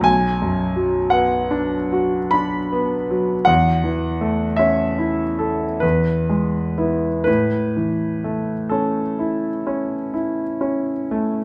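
Serene and tender, this brief passage from a longer romantic nocturne unfolds in A major at a relaxed 40-58 BPM in 9/8, with a supple rubato feel. A concert grand piano plays alone, up front and clear, its smooth, vintage tone anchored by a deep bass as the harmony moves from Bm through A/E and E to settle on A at 7.3 seconds. A moderate recital hall reverb surrounds the instrument with a gentle sense of space.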